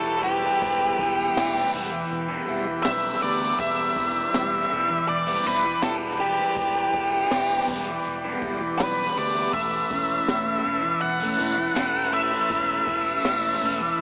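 Psychedelic rock at 81 BPM in a straight 4/4, this hypnotic, mysterious passage in E dorian is cut from a longer piece and moves from Em to Aadd9/E at 9.5 seconds. Up front, a dark octave-fuzz lead guitar carries the melody, its distorted, picked tone trailing dub echo. Beside it, a crunchy, double-tracked overdriven guitar plays a riff, with a phaser and more dub echo. Further back, a vintage combo organ holds buzzy, clean chords with light vibrato, while a round, punchy picked electric bass stays low in the background. Brushes on an acoustic kit come in at 0.3 seconds, with a high-tuned snare, boomy kick and hi-hat, and the drums also carry dub echo. The whole thing has moderate spring reverb, an echo-heavy mix and a small-speaker sound.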